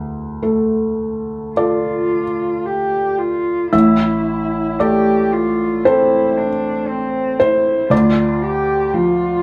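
Neoclassical piano and strings in a fragile, reflective mood, this excerpt moves in a loose, rubato 4/4. A felt-muted upright piano carries the accompaniment from the start, mellow and intimate, with thin felt and audible action noise close up. At 1.6 s a single bowed cello joins as a veiled, dark second line with vibrato and a soft attack, and both sit in a wet studio reverb that suggests players performing live in one room.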